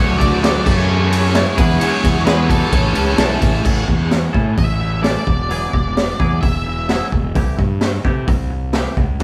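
A dark octave-fuzz lead guitar carries the melody over a growly fuzz bass, a twangy clean guitar riff, a biting overdriven guitar riff and a soft, bell-like glockenspiel played with rubber mallets, before a raw garage drum kit with a high-tuned snare and boomy kick joins at 0.2 seconds in this upbeat, wistful indie rock passage at 130 BPM in A major. The glockenspiel drops out at 3.4 seconds and the overdriven guitar at 3.6 seconds, leaving the punchy bass and gritty drums up front as the lead melody continues until 7.1 seconds. The band plays live together in a stone room with moderate reverb, and the passage moves through chords such as Dadd9, F#m7 and C6.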